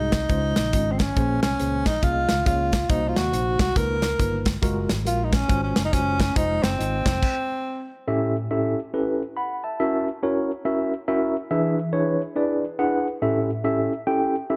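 Jubilant and uplifting, this swung uptempo gospel excerpt sets a breathy, intimate tenor saxophone melody, with slapback echo and scooped notes, over a mellow tine electric piano, a round, punchy fingered electric bass and a tight, up-front acoustic drum kit in a small room, until the bass stops at 7.2 seconds and the drums just after, and, following the saxophone's final phrase, the piano carries on alone through a new section of seventh chords to 14.6 seconds.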